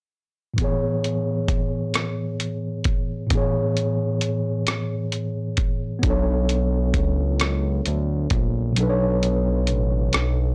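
Sensual and intimate, this slow six-eight R&B excerpt moves at 44 BPM in A major with a straight feel, lifted from a longer piece. A mellow tine electric piano opens at 0.5 seconds with Amaj9 voicings heard through its built-in speakers, clean and up front, with plate reverb around it. A dusty soul sampler-style kit joins almost at once with hi-hat, rim click and a thumpy kick, compressed and gritty, sitting close to the listener. At 6.0 seconds the harmony moves to Bm9 and a smooth synth bass enters, blending sawtooth and square tones with a fast attack, sustained notes and gliding portamento. The kick drops out at 8.8 seconds, leaving hats and rim clicks over the keys and bass. The whole recording is blown-out and overdriven in a moderate studio room, giving it a saturated, lo-fi haze.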